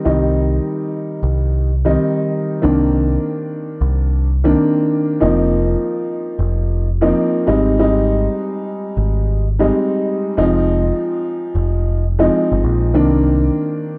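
Moody and reflective, this boom-bap hip-hop excerpt moves at 93 BPM in 4/4 with a swung sixteenth-note feel in C minor. A dark upright piano carries the accompaniment from the start, its mellow, woody, boxy tone sitting up front and colored by cassette tape character and filtering that trims both the highs and lows. A deep dub picked electric bass enters at 0.1 seconds, round, amped and direct, holding the low end up front beneath the keys. The harmony settles from Cm into a brief opening section before shifting at 2.6 seconds through Cm9, F7sus4, Abmaj7 and Fm7, then returning to Cm9. A moderate plate reverb with a long tail lends the excerpt a spacious, brooding air.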